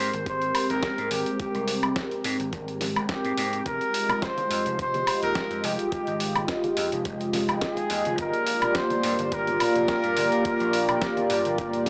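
A mellow trumpet section carries the melody up front in this sleek, groovy nu-disco excerpt, its light vibrato trailing into analog delay over a dark, detuned analog pad that pumps with the sidechain and moves through a filter sweep across Abmaj9, Fm9 and Gm7 chords. Beneath, a punchy, amped slap bass with transformer saturation and sidechain pumping sits with a dusty, sampler-style kit of hi-hat, medium-tuned snare and woodblock and a thumpy electronic kick, both gritty and placed in a small room, while soft-handed cabasa and congas slip in very quietly at 3.7 s. The overall sound is dry and hardware-driven, with cassette-tape character, small-speaker colour, light reverb and a gentle swing on the sixteenths.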